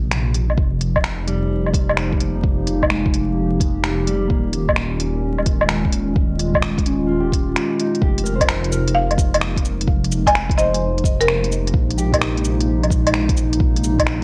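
A buzzing, woody marimba struck with hard mallets carries a brief analog-delayed melody from 8.9 to 11.8 seconds, cutting through a wistful, melancholic future garage groove with a swung sixteenth feel. Beneath it, a warbly, nostalgic tape-like pad holds chorused chords and a detuned, rumbling saw bass sits low, both pumping to the sidechain. A deep electronic kick and a crisp, up-front kit of cabasa, finger snaps, hi-hat and woodblock drive the beat, while a mellow, clean electric guitar plays low-pass filtered, tape-echoed accompaniment with a filter sweep through the first 8.0 seconds, all in a dry, gritty mix dusted with vinyl crackle.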